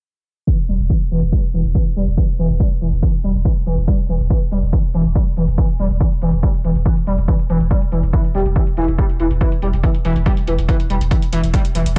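Industrial and hypnotic, this driving peak-time techno excerpt sets a punchy, up-front kick and faint metallic hi-hats in a small room, the hats pumping with the sidechain, under a screaming, guitar-like sawtooth lead that riffs from 0.5 seconds through distortion, lush chorus, dub echo, sidechain pumping and a filter sweep, while a deep, saturated triangle sub bass joins at 0.7 seconds, pumping and low-pass filtered, in a dry, close mix.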